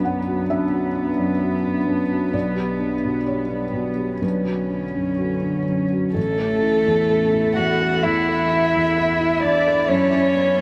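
A felt-muted upright piano, a cello and a dark analog pad open this melancholic, longing neoclassical piece together, moving with a loose rubato feel in 4/4. The piano sits up front as the accompaniment, soft and intimate, its thick felt giving a mellow tone with audible action noise. The bowed cello carries a second line close by, played sul tasto with light vibrato and a soft attack, while the pad holds sustained chords in the background, deep and moody with detuned square, sawtooth and triangle waves, a sub octave, slow attack and long release, coloured by chorus and phaser. At 6.2 seconds a single bowed violin enters up front with the melody, dark and woody, sul tasto with vibrato. The harmony drifts from Bm through G/B and Bmadd9 to A5, settling on F#sus4 at 9.9 seconds, all set in a huge, wet ambient reverb heard from further back in the room before the clip ends at 10.6 seconds.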